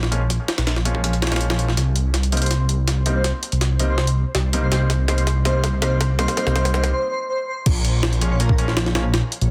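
Nostalgic and raw, this drum and bass excerpt with a jungle edge runs on a gritty, pitched-up sampler-style drum kit with a thumpy kick, high-tuned snare and crash, all filtered and set in studio reverb. Beneath it sits a thick, beating detuned saw bass with a menacing, saturated weight, while a clear grand piano plays filtered stabs through dub echo over Bbm7 and Cm7 chords. From 2.4 seconds an airy, dreamy lead enters with chorus, phaser, vibrato and a cassette-tape tint, and after a drum fill and a short break the track drops at 7.7 seconds, all held within a dense, heavily limited master.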